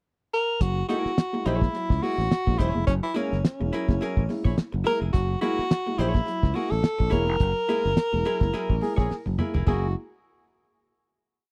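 A dry, close 1970s-style studio sound frames this short, playful funk piece, where a breathy, scooped tenor saxophone states call-phrase motifs up front over a thuddy, cloth-damped drum kit with fat snare and ghost notes, a growly fingered electric bass riff with chromatic approach notes, a woody upright piano pecking out percussive stabs, and a clean hollow-body archtop guitar scratching sixteenth-note rhythm, before a band accent from 7.4 seconds and a clear trombone punching in at 8.8 seconds lead to a drum fill and the closing chord.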